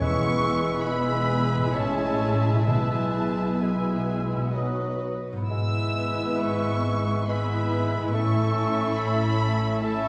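Lyrical and tender, this slow romantic orchestral movement in 3/4 and E major moves at 62-72 BPM with rubato: veiled, con sordino violins carry the melody, joined by a hollow, airy flute, a second muted violin section, a warm clarinet, a clear bassoon, muted violas, mellow sustained French horns, ringing harp arpeggios and dark muted cellos and double basses, while hard-mallet timpani drop out at 4.0 s, heard from further back in a wet scoring-stage reverb.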